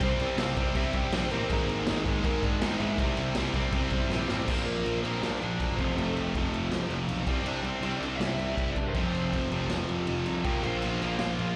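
Punk rock at its rowdiest, this energetic live snippet pairs a sludgy distorted guitar with an up-front, bright, tight distorted riff guitar, a growly fuzz bass and a gritty garage drum kit with dark cymbals and a punchy kick, while a hollow-body overdriven guitar carries a slapback-echoed melody in the background throughout, and a drum fill at 4.1 seconds drops the band into half time.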